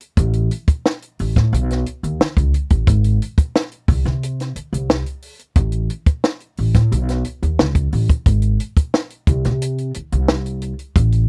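Smooth and romantic, this short cut from a longer lush 1970s-style soul piece moves in a straight 4/4 with a compact cocktail drum kit of hi-hat, tight kick and high-tuned snare, sounding natural and up front in a tight booth. A pizzicato upright bass joins at 0.2 seconds, its steel strings giving a woody, dark tone that sits close alongside the kit. The sound is dry and intimate, with the feel of a close 1970s-style studio recording.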